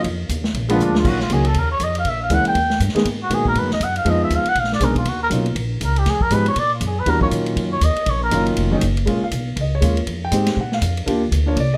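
Smoky and cool, this clip of small-group swing and bop runs at a brisk 240 BPM in Eb minor, with an intimate grand piano, its action noise audible, comping up front beside a woody pizzicato upright bass and a vintage kit with dark cymbals, a punchy kick and a rolled-off top. A cup-muted trumpet carries the melody from 0.7 to 8.5 seconds, soft and veiled with vibrato, set distant in a roomy plate reverb, and a drum fill lands at 0.8 seconds. Light reverb gives the whole a natural, studio-room feel.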